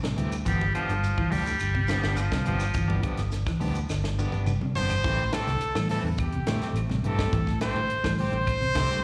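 Afrobeat with a defiant, hypnotic mood, cut from a longer piece and heard as a live gig through the venue's PA in moderate club reverb. A bright, punchy baritone saxophone solos up front from 0.5 s over a tight funk drum kit with a high-tuned snare, dark, round fingered bass, thick-skinned vintage congas, a grainy, distant shekere, very quiet woody claves, a clean hollow-body guitar playing arpeggios in the background, and a twangy, slightly broken-up guitar adding stabs through harmonic tremolo and plate reverb. After a drum fill at 3.9 s, a clear trumpet with light vibrato takes the melody at 4.8 s, joined by a reedy, breathy melodica as a very quiet second line.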